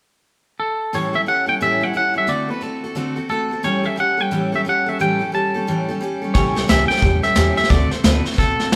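A twangy, clean electric guitar leads this rollicking, upbeat rockabilly excerpt at 177 BPM with a swung feel in A mixolydian, carrying the melody from 0.6 seconds over a bright, full-bodied picked steel-string acoustic guitar whose finger squeaks come through up front as the chords move between A7 and D7. At 6.3 seconds a woody, thumpy pizzicato upright bass on gut strings and a dark, smooth brush drum kit with a tight kick and rolled-off top join in. The band sounds like it is playing live together in one large studio room with moderate reverb.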